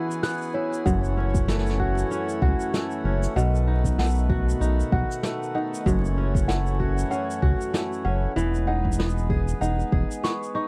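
Delicate and autumnal, this folktronica excerpt in F# dorian moves at 96 BPM with a light swing, as fingerpicked, ringing kora arpeggios with tape echo sit up front beside a round, dark analog bass, while a reedy, breathing pedal harmonium holds chords, a bell-like small celesta with tape echo adds a second line in the background, and brushed shaker and snare enter at 0.1 seconds, joined by a deep electronic kick from 0.9 seconds, in a dry, close 1970s-style studio sound with vinyl crackle.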